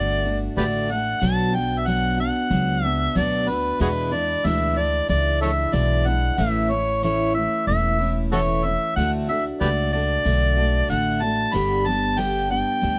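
A gritty, overdriven harmonica carries the jazz-tinged solo melody up front with vibrato, scooped notes and tongue slaps, over bright, full-bodied picked dreadnought acoustic guitar with audible finger squeak and a dark, thumpy pizzicato upright bass, in this down-home, nostalgic country excerpt at 93 BPM in D major, recorded close and dry.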